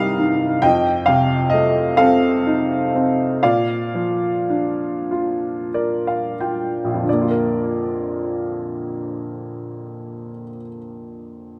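Peaceful and tender, this brief classical excerpt in Bb major features a lone upright piano, clear, woody and slightly detuned with long sustain, playing up front in a rubato 6/8 at a slow 28-46 BPM, easing from Cm through F7 to Bb as it slows between 0.6 and 7.1 seconds, adding a fill from 5.1 seconds before a new section opens at 7.1, all within a moderate concert hall reverb.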